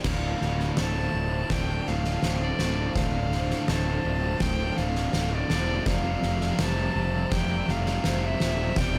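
A brooding, cinematic post-rock build-up in D minor at 82 BPM opens with a very quiet, lush string section holding sustained chords, a hushed twelve-string electric guitar picking arpeggios and a ringing vibraphone with analog delay sitting in the background. A growly fuzz bass and an oversized, low-tuned drum kit with a punchy kick, fat snare and dark cymbals are pushed up front in a pumping stone room, while from 0.1 s a bright, overdriven garage guitar riff joins an intimate solo violin melody played sul tasto with an airy bow and echoing delay. The harmony moves from Dm7 to Fadd9 at 5.9 s before the passage is cut off.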